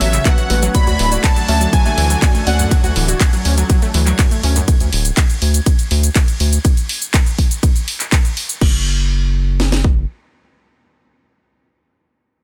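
A dense, heavily limited modern master with little reverb carries this driving, expansive progressive house excerpt at 122 BPM, opening on a drop over Aadd9 and D chords. A punchy kick and cracking snare sit up front with a tape-warm, small-room character, while another electronic kit adds crash, ride, hi-hat, handclaps and shaker, its hats, cymbals and percussion riding the same sidechain pumping that breathes through the round, deep analog bass, the detuned unison pluck arpeggios and the lush, warbling pad chords. A smooth, full-bodied supersaw melody joined by a second line from a pure FM synth bell, a boxy felt-muted upright piano stabbing in the background and a faint, sparkling granular texture all thin out, leaving the bass, kick and snare to carry on until about 10 seconds.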